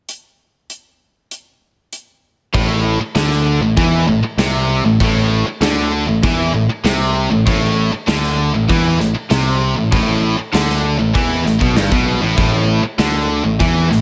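Hard rock with an aggressive, menacing mood, cut from a longer piece in a straight 4/4. A gated 80s drum kit opens alone, up front in a bright stone room, with bright cymbals across crash and hi-hat, a medium-tuned snare and a tight kick. At 2.5 seconds the riff arrives over an A minor chord, carried by three guitars in the same low register: a double-tracked, high-gain distorted guitar, a bright overdriven electric guitar, and a hollow-body semi-hollow guitar with a warm overdrive that sits in the background. A picked electric bass enters at the same moment, punchy and up front, blending a direct and amped tone beneath the guitars. Light reverb and studio ambience frame the mix, and the full band drives on together until the end at 14.0 seconds.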